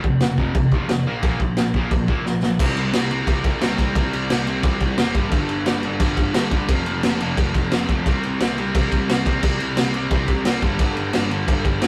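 A raw garage drum kit sits up front in a small, pumping room, its boomy kick, medium-tuned snare and dark crash cymbal coming through saturated and gritty with a rolled-off top. This is an upbeat, rebellious punk rock track in a straight four, cut from a longer piece. A bright, distorted electric guitar, double-tracked and compressed, drives a picked riff in the low register, sharing the front of the mix with the drums. Underneath, a fuzz-laden picked electric bass growls in the background, overdriven and carrying a warm body. A short drum fill at 2.3 s launches a new section at 2.6 s that runs through power chords on C, G and F. The whole take has the rough feel of a rehearsal-room recording, with light reverb and a warm saturated sheen.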